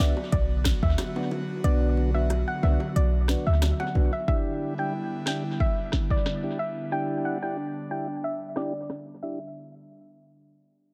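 Tough and bouncy, this short dancehall cut pairs an up-front clean 808-style bass, deep and boomy, with tight, high-tuned bongos carrying analog delay in the background, both dropping out at 4.1 seconds, while an electronic afro-pop kit with a sharp snare and crisp hats enters at 0.3 seconds and mutes its kick from 1.6 to 4.3 seconds. A soft, round pluck melody with chorus and analog delay floats over a mellow tonewheel organ with key click and slow rotary speaker, and an airy, breathy pad holds sustained chords with chorus and sidechain pumping. The echo-heavy, dry mix shifts from Bm to Em7 at 4.3 seconds, where a filter sweep begins.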